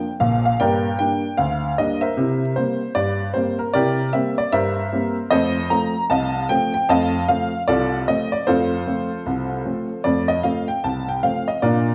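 Playful and jaunty, this short excerpt from a longer ragtime piece moves at 76 BPM in 2/4, with a gentle swing on the sixteenth notes. A lone upright piano carries everything from 0.0 to 11.9 seconds, spanning Bb1 to Bb5 and sitting up front with a clear, woody, slightly detuned and worn character and long sustain. The harmony opens on a high Bb5 before settling into G minor, then travels through C7 and F7 to come to rest on F. The piano rings out in a resonant hall with a wet reverb of about 1.3 seconds, as if recorded in a church or concert hall. Vinyl crackle and a muffled top end, capped at 7.5 kHz, give the sound an aged, old-record feel.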